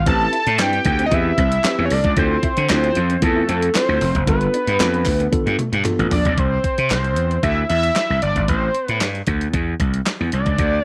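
A fat, detuned analog lead sings the melody over a growly, overdriven slap bass from the first moment of this smooth, feel-good early-eighties boogie funk, moving at 114 BPM in C major through Am7, Dm9 and G7 to Cadd9 before returning to Am7. A sampler-style drum machine with a thumpy kick keeps the beat beside a very quiet, crisp group handclap, while a mellow tine electric piano and a dark, lo-fi picked guitar riff fill in until about 6 seconds, as a drum fill at 5.3 s leads into the second section at 6.4 s. The lead's filter sweep, ring modulation and vibrato stand out, set in a digital ambience.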